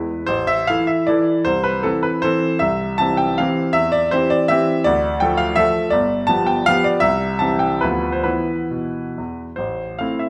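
A baby grand piano plays alone from start to finish, its clear, present tone sitting up front across a range from G1 to A5. This is a romantic classical dance in 3/4, a capricious yet wistful piece in A minor whose dotted rhythms give it a lilting, slightly wayward step. The tempo moves with generous rubato, somewhere between 120 and 175 BPM, so the pulse stretches and gives as the phrases unfold. The harmony leaves A minor for a brighter stretch around C major, passes through D minor and G7, and returns home to A minor at 9.6 seconds. A wet recital-hall reverb with a 1.6-second decay surrounds the instrument, and the short passage is clearly cut from a longer piece.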